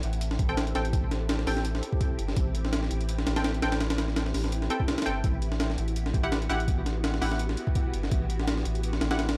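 A sampler-style breakbeat drives this dark, nostalgic drum and bass and jungle passage, its hi-hat, kick and snare carrying a light swing on the sixteenths. The compressed, gritty kit sits up front with a thumpy kick and a high-tuned snare, touched by studio reverb. Beneath it, a round, deep dub sub bass holds sustained notes with a fast attack, also up front. A soft string machine lays silky, vintage chords, its slow attack and long release colored by phaser and ensemble chorus. From 0.5 seconds, a muted, detuned dub chord stab adds decaying plucks with chorus and dub echo, while the harmony moves from Am7 to Emadd9 at 5.2 seconds. The mix is dry and raw, with transformer saturation and vinyl crackle giving this excerpt, cut from a longer piece, a worn hardware character.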